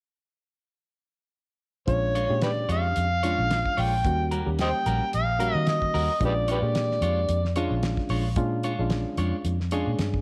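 Gritty and swaggering, this short excerpt of straight-eighth soul blues moves at 111 BPM in 4/4 with a light sixteenth-note swing, cycling through Bb7#9 and Eb7#9 chords. An up-front, overdriven harmonica carries the jazz-style solo melody from 1.9 to 7.5 seconds, full of vibrato, scooped notes and tongue slaps. Beneath it sit a round, foam-muted vintage bass, a dry 70s drum kit with a fat snare, tight kick and rolled-off top, and a reedy electric piano heard through its built-in speakers, while a clean, compressed electric guitar adds picked stabs from 2.2 seconds, all within a light studio reverb.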